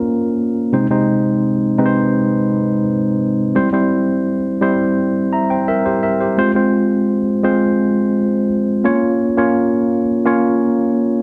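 Pop in a nostalgic, moody vein, this short passage cut from a longer piece features a tine electric piano playing alone from start to finish across its 11.2 seconds. The instrument sounds worn and slightly out of tune yet clean, heard through its built-in speakers and placed up front, with a slapback echo trailing its notes. It ranges from C3 up to Bb5 in a straight 4/4 feel, moving through Bbm, Ab/C, C and Fm before returning to Bbm near 8.8 seconds. A moderate echo chamber reverb with a digital ambience surrounds the playing, lending the solo a faded, reflective air.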